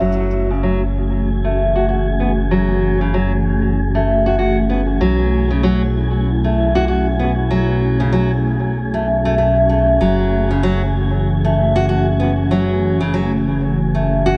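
An echo-heavy, lightly reverberant downtempo piece in F# minor at 96 BPM with a swung, hypnotic and earthy feel, built on a fingerpicked nylon-string guitar playing up-front arpeggios coloured by gritty 12-bit sampler texture, low-pass filtering, analog delay and a filter sweep, over a smooth, nasal synth bass, a mellow, detuned ethereal pad with ensemble chorus holding sustained chords, and a faint, breathy wind-like noise texture, all moving through F#m7 and B9sus4 across this 14.4-second excerpt.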